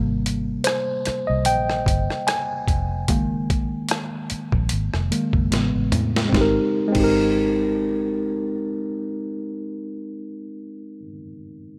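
Soulful and sensual, this neo-soul R&B fragment moves at an unhurried, lightly swung pace, with a worn, slightly out-of-tune tine electric piano up front taking a solo over lush chords until 6.3 seconds. A dark, foam-muted fingered electric bass adds round, amped low end, while a gritty, pitched-down boom bap sampler-style kit with a thumpy kick and high-tuned snare punches through until its fill ends at 6.3 seconds and the drums drop out at 7.2. Light reverb gives the short, clipped passage a touch of space.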